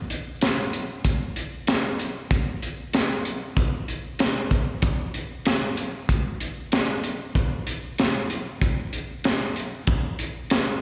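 A gritty, rollicking blues groove at 95 BPM in a straight 4/4, this short excerpt features only a crunchy breakbeat drum kit playing hi-hat, kick and snare from 0.1 to 10.7 seconds. The kit sits up front with a dark, saturated character, a punchy kick, a high-tuned snare and a rolled-off top. It comes across like a live gig heard through the venue's PA, bathed in a lush recital-hall reverb with a 2.7-second tail.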